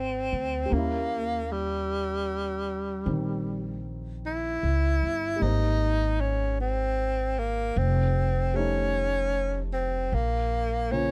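Intimate and tender, this jazz ballad moves at a slow 51 BPM in 4/4 with a lazy swing on the eighth notes. A breathy tenor saxophone carries the melody up front, its whispered tone, soft attacks, scooped notes and vibrato giving each phrase a close, confiding quality. Beneath it, a dark baby grand piano sits in the background with a mellow, short-sustained sound, the noise of its action audible. An upright bass, plucked with steel strings, adds a woody, thumpy low end that is also placed up front. The harmony drifts from Fm11 through Eb7b9 and Abmaj9 to F7, arriving on Bbm at 10.1 seconds. Recorded with close, detailed microphones and little reverb, this short cut from a longer piece feels like it is being played just a few feet away.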